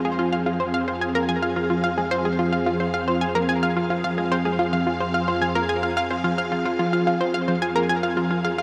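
Ambient, sequencer-driven space music in F minor at 109 BPM, this hypnotic, expansive excerpt rests on a single Fm chord. Up front, a swirling, vintage string machine holds sustained chords with ensemble chorus and phaser, while a bright analog pluck with a fast attack plays a riff through chorus and tape echo. Underneath, a soft, round pluck fades in with dark arpeggios and a nasal, evolving analog drone fades in on F2 in the bass, all within a huge, wet reverb whose shimmer trails the strings and both plucks.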